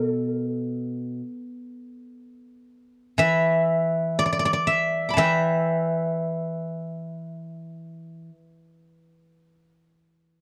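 A steel-string zither, played with fingerpicks, carries this short passage alone from start to finish, its warm, ringing, silvery tone sitting up front in the sound. The piece is Chinese traditional solo plucked-string music in free time, set in the E yu mode, with an elegant, contemplative mood. The zither ranges from B2 up to D6, spanning both low and high registers. The recording is dry and close, in a 1970s studio style with little reverb, so the acoustic instrument's detail comes through plainly. Lasting 10.4 seconds, it is cut from a longer piece and stays within a single section.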